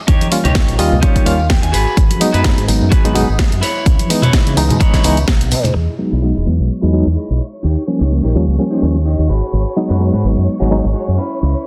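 A dense, heavily limited mix with light digital ambience carries this sunny, feel-good filtered disco house cut at 127 BPM, where a punchy, tape-tinged electronic kick, a house kit with cracking snare and hi-hat, and distant tambourine and congas drive the opening before dropping out by 5.7 seconds, beneath a pumping, filtered clean picked electric guitar riff with a fill near 0.6 seconds, an up-front envelope-filtered fingered bass, and a reedy, bright electric piano with fast tremolo, phaser and 12-bit sampler grit, while a bowed violin section with expressive vibrato slips in at 5.8 seconds under a filter sweep.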